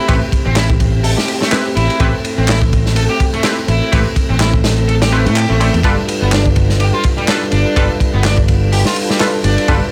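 Breakbeat at 125 BPM in A minor, this swaggering, energetic excerpt swings its sixteenths over a crunchy, saturated breakbeat kit with a tight kick, dark cymbals and a rolled-off top, joined at 0.6 seconds by layered electronic handclaps, while a direct, up-front fingered electric bass holds the low end. A double-tracked fuzz guitar riff with overdrive and tape echo plays alongside nasal, band-passed sawtooth chord stabs carrying chorus and tape echo. Underneath, a mellow, flute-like percussive tonewheel organ sustains chords through chorus vibrato, a slow rotary speaker and sidechain pumping, moving from Am7 to G7 at 5.8 seconds.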